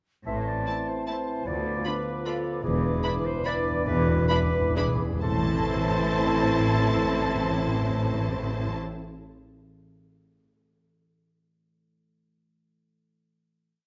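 In a moderate recital hall ambience, this brief, bittersweet orchestral ballroom waltz in A minor sweeps along with rubato at 120-164 BPM, a distant, expressive violin section carrying the melody while a second, focused violin section, a viola section with portamento, a clear cello section and a smooth double bass section sustain lush bowed harmony, joined by a mellow clarinet, pure-toned flutes, a dark cor anglais, a very quiet vintage bassoon, a tight French horn section, a ringing thumb-plucked concert harp in broken chords and round soft-mallet timpani, slowing from 2.1 seconds, with a timpani fill entering at 2.6 seconds, before settling on a final A minor chord at 5.2 seconds.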